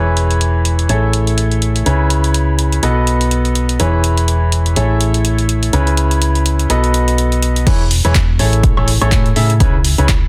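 A dense, heavily limited modern master wraps this feel-good, euphoric piano house excerpt in digital ambience, cut from a longer piece. Up front, a brilliant baby grand piano with long sustain plays an open, ringing riff through tape echo, its chords cycling through E6, Amaj7, C#m7 and B7 and pumping with sidechain compression. Beside it sits a dark, round hollow-body electric bass, fingered and amped, also pumping and softened by a low-pass filter. From 0.2 seconds an analog drum machine, tape-warm and re-recorded in a small room, drives a 4/4 groove with a swung sixteenth feel, scattering crash cymbal, handclaps, hi-hat and woodblock. At 7.7 seconds the drop arrives as a punchy electronic kick joins, giving the closing section a firmer, more insistent pulse.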